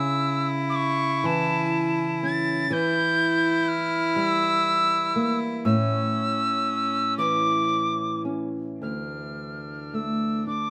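A wooden whistle carries the melody from the first moment, pure and warm with a crisp, chiffy attack and an unsteady vibrato, while a thumb-plucked nylon-string guitar and a single bowed cello enter alongside it, the cello's second line clear and nasal with an earthy edge. This longing, haunting Celtic slow air moves in a free, rubato 6/8 at roughly 35 to 41 dotted-quarter beats per minute, and its harmony drifts through an A chord over C# and a diminished chord before shifting to D minor at 8.8 seconds. The sound is dry and open-air, with the small-toned guitar and whistle placed up front, in a short excerpt cut from a longer piece.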